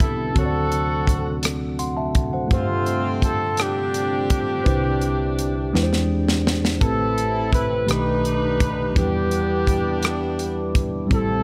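Soulful and jubilant, this slow gospel passage in 6/8 at 56 BPM sets a tight, up-front jazz horn section with a touch of vibrato on the melody over a worn, slightly out-of-tune tine electric piano, a mellow, round tonewheel organ holding chords in the background through a slow rotary speaker, and a crisp, polished acoustic drum kit with a punchy kick and rim clicks that plays a fill from 5.7 seconds, while a very quiet classical-style French horn section enters at 6.8 seconds on sustained chords, within a light small-room ambience as the harmony moves from D7 through Cmaj9 to Em7.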